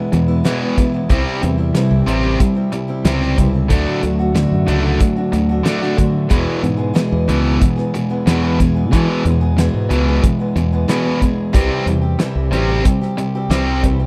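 A damped 1970s drum kit sits up front with a fat snare, tight kick and hi-hat, driving this confident, sunny classic rock excerpt at 92 BPM in a straight 4/4. Two overdriven electric guitars carry riffs, one a cranked stack sound and the other sludgy and warm. A bright, direct fingered electric bass and a quieter picked acoustic archtop guitar fill out the chords moving through E, C and D, all in a dry, close 1970s-style studio sound with a touch of reverb.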